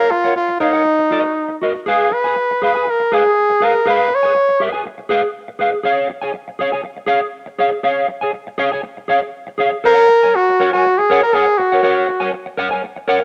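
A moderate echo-chamber reverb gives this short disco excerpt a roomy glow as it moves at a driving, danceable 120 BPM in straight 4/4. Up front, a clear, punchy flugelhorn sings a smooth-topped pop-style solo melody with light vibrato, playing from 0.0 to 4.6 seconds and returning at 9.9 seconds. A dark, clean, fingered electric guitar, also up front and shimmering with ensemble chorus, carries the accompaniment throughout, moving from Gbmaj7 and Ebm through a rootless Db7 before settling on Gbadd9.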